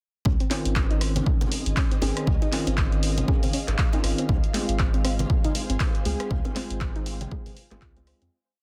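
A punchy four-on-the-floor kick sits up front in this sunny, soulful deep house piece, where a round analog bass with sidechain pumping plays a syncopated riff, an analog drum machine supplies hats, claps and rim clicks, distant congas and bongos add syncopated hand drums, a felt-muted upright piano with audible action noise plays mellow chord stabs moved in parallel, a soft pluck with chorus and tape echo loops a 12-step sequence that drifts against the bar, and an ethereal pad enters at 1.5 seconds with slowly shifting chords before the dense, dry mix fades out from 5.6 seconds.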